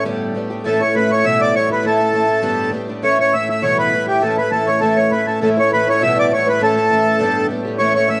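Set in a moderate recital hall with a gently rolled-off top, this cheerful, rollicking Celtic folk excerpt has a reedy, full-bodied accordion up front carrying the swung melody over a shimmering, octave-doubled picked twelve-string acoustic guitar with lush chorus and a breathing, nasal hand-pumped harmonium drone, while a very quiet, airy concert flute with vibrato and a soft attack joins on a second line at 5.4 seconds.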